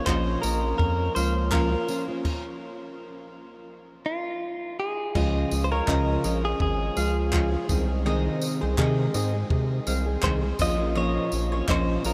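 A round, up-front analog bass anchors this easy-going, heartfelt acoustic pop clip at 83 BPM with a light sixteenth-note swing, beneath a clean, compressed direct electric guitar melody with spring reverb, dark fingerpicked nylon-string guitar, double-string mandolin arpeggios, a very quiet gritty overdriven tonewheel organ with slow rotary speaker, and a dry, punchy cocktail kit of kick, handclaps, tambourine and dark crash. It is set in a vast echoing space, opening on Bbm before the band hits a stop from 2.2 to 5.2 seconds, then moving through Db and Ab/C back to Bbm.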